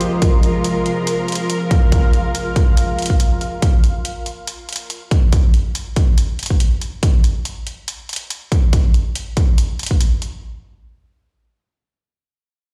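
The rhythm sits in a half-time 4/4 at 141 BPM with a light 16th-note swing, driven by a punchy, up-front electronic kick that runs from 0.2 s to 10.0 s and a layered electronic hi-hat heard throughout. This short heavy wobble dubstep cut from a longer piece feels menacing and rests on F minor, holding an Fm chord. For the opening 3.6 seconds, a dark, woody symphonic string section bowed with vibrato holds lush sustained chords from a distant place in the mix, with a sidechain pump. Above it, a granular cloud pad drifts in a blurred, detuned haze with a slow attack, long release and its own reverb, also pumping before it drops out with the strings. Both drum parts have the weight of being replayed through a big sound system in a bare room, and the whole passage carries light reverb and a digital ambience.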